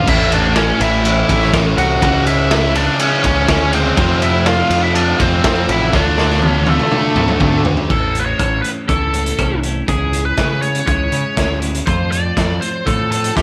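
A biting lead guitar leads this cathartic, anthemic alternative rock fragment, its overdriven melody sitting up front with a tape echo trailing behind it. Beneath it, three riffing guitars stack up in the background: a sludgy overdriven one, a dark, compressed fuzz guitar and a very quiet, double-tracked distorted part. A growling, round bass with overdrive anchors the low end. A raw garage drum kit sits close and lo-fi, with a punchy kick, muffled dark cymbals and a gritty, saturated, rolled-off sound, and it plays a fill from 5.9 seconds. At 7.9 seconds the riff guitars drop out and a twangy twelve-string electric guitar takes over with clean arpeggios under a lush chorus. The whole piece sits in a small room with light reverb, and the harmony moves between major and minor chords as the lead keeps singing over the shift.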